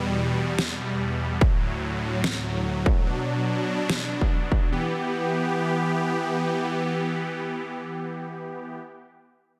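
Heavy wobble dubstep in a chaotic, half-time swing, where huge detuned supersaw chords pump against the sidechain from the start through 8.8 seconds while a deep overdriven snare enters at 0.6 seconds and a distorted, layered kick hits up front from 1.4 to 4.6 seconds, all set in a lush hall reverb under a dense, heavily limited master.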